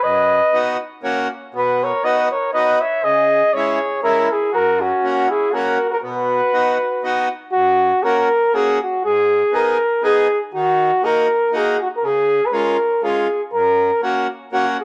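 A moderate spring reverb gives this jolly, festive alpine dance band recording a roomy studio glow, cut from a longer piece and set at 120 BPM in a swinging 3/4. An up-front, mellow flugelhorn carries the melody with light vibrato in a classical style, joined by a punchy, vintage-toned trumpet on a second line until 7.3 s, while a reedy, airy accordion supplies full accompaniment throughout. The music opens in B major and shifts to F# major at 7.5 s for its second section.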